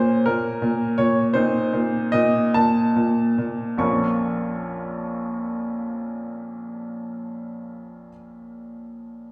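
Heard from further back in a wet recital hall with a 1.6-second reverb, this brief cut from a longer classical-period piano sonatina sets a brilliant, natural-toned baby grand alone in Bb minor, spanning Bb1 to Db6 at 47-56 BPM in a rubato 6/8 that slows through its first 3.8 seconds, moving from Bbm to Bbsus24 at 1.3 seconds and back to Bbm as a new section begins at 3.8 seconds, with a dramatic yet elegant mood.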